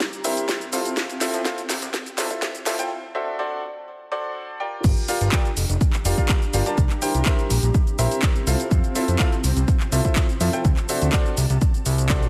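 Set in a light reverb with a digital ambience, this energetic, soulful piano house excerpt opens on a build-up with a filter sweep and a drum fill, reaches a break at 2.9 seconds and drops at 4.8 seconds, driven by a punchy, overdriven electronic kick up front and an overdriven house kit of cracking snare, bright hats, shaker, handclaps and crash cymbal, while a fat sawtooth-and-square analog bass with a moving notch, a clear, worn grand piano riff with delay, and a blurred, detuned granular cloud pad in the background all pump with the sidechain.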